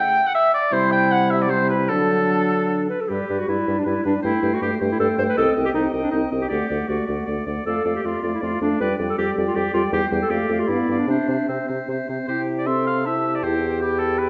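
A quick classical-period movement for wind quintet, spirited and cheerful, moves in a lilting three with a rubato feel, the airy, distant flute carrying the melody with vibrato and tongued notes while the up-front oboe sings a second line with a vintage warmth. From 0.7 s the clear clarinet and mellow, soft-attacked French horn fill in the accompaniment and the dark, vibrato-tinged bassoon takes the bass, as the harmony settles into C major around 7.7 s. The wet recital hall reverb and dark production give the passage a roomy glow, and it is cut from a longer piece.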